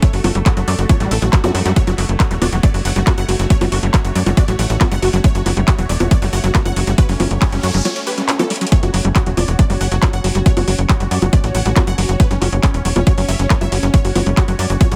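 A punchy, up-front electronic kick and a tight, nasal sequencer bass drive this hypnotic psychedelic trance excerpt at 138 BPM in F# minor, joined from the start by a gritty, squelchy acid bass under a filter sweep and a detuned supersaw stab melody with phaser, sidechain pumping and dub echo, plus a bubbling stepped-filter chord texture and a techno kit of bongos, handclaps and metallic hats, while a warbly lo-fi pad enters at 3.5 seconds and a noise sweep sounds as the kick drops out near 7.9 seconds before a drum fill at 8.5 seconds, all in a digital ambience.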